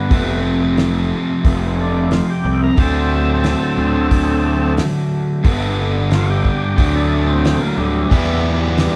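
A straight, steady 4/4 groove anchors this short classic rock cut, with a cloth-damped acoustic drum kit of hi-hat, tight kick and fat snare sitting up front, its dark, rolled-off top giving it a thuddy, smooth weight. Beneath it, a picked electric bass hits with punchy fuzz, while a cranked stack guitar drives the main riff with a bright, overdriven bite and a touch of spring reverb. Over the top, an overdriven tonewheel organ solos throughout, its thick, gritty tone turning through a slow rotary speaker. At 8.1 seconds a sludgy, distorted second guitar joins with its own riff as the harmony moves through F, D, G and D before landing on E minor. The band sounds captured live together in a stone room with moderate reverb, and the mood is swaggering and sunny.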